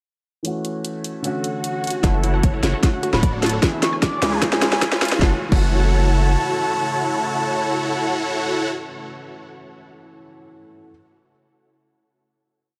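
Huge, detuned supersaw chords with a phaser drive this lush, emotional future bass piece at 151 BPM in a half-time feel in F# minor, entering at 2.0 s alongside a round, octave-layered synth lead with chorus and delay, a very quiet warbling unison pluck arpeggio, a deep 808-style bass and a hard-clipped electronic kick. A baby grand piano with vintage sampler grit opens the piece at 0.4 s with held chords in the background, together with a trap kit with sharp snare, bright hats and crash. They are joined by an ethereal, airy pad and a faint swell and riser that lead into the build. Sidechain pumping moves the piano, pad, lead, supersaws and bass as the harmony runs through F#m7, Dmaj7, E7 and C#7 before landing on a final F#m7 at 5.2 s, all within a dark production and light digital ambience.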